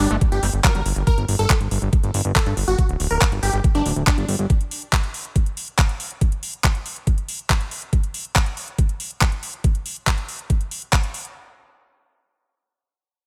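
This driving, psychedelic trance fragment opens with most parts arriving together: a punchy supersaw stab carries the melody in G harmonic minor, a squelchy, screaming acid riff sits in the background, a barely audible downlifter passes beneath, and a garage drum kit lays down metallic hi-hats and handclaps at a straight 140 BPM in 4/4. The acid line is aggressive and resonant, with distortion, chorus, sidechain pumping and digital delay, and it is gone by 0.8 seconds. The stab is a detuned unison sawtooth with a filter pluck and a moving notch, colored by phaser, cassette tape character, pumping and delay. Underneath, a fat, detuned analog bass blends sawtooth and triangle tones with wave folding and a filter sweep, sitting thick and up front until 4.5 seconds. A knocking, tape-warm electronic kick, entering just after the start, and the layered kit carry on, with a touch of studio reverb, over a single G5 harmony that drops away at 11.4 seconds as the cut moves into a new section.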